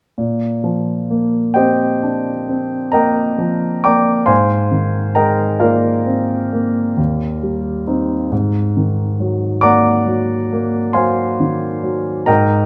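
A warm, polished grand piano plays alone and up front from 0.2 to 12.7 seconds in this hazy, luminous impressionist classical fragment, drifting in a rubato 9/8 through lush chords such as Bb69, Abadd9, Eb69 and Ab9 across a range from Eb2 to D6, its long sustain blooming into a wet recital-hall reverb within a dark production tuned to A4 = 437 Hz.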